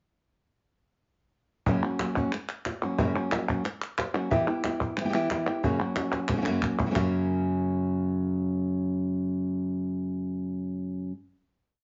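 The fingerpicked nylon-string guitar anchors this short, dramatic flamenco piece, its fresh strings sounding warm and classical up front as it combines picked playing with rasgueado strumming and taps on the top. Alongside it, also up front, a woody, vintage-sounding, band-limited cajon with faint snares and soft hands supplies bass tones and slaps, while crisp, close palmas hand claps mark the straight four-beat cycle. The passionate groove moves from F# to E minor and back to F#, and the cajon plays a fill from 6.0 to 7.0 seconds. At 7.0 seconds the percussion drops out and the guitar rings a final chord on its own until 11.1 seconds. A moderate studio reverb gives the parts a short sense of space, and the top end of the recording is gently capped.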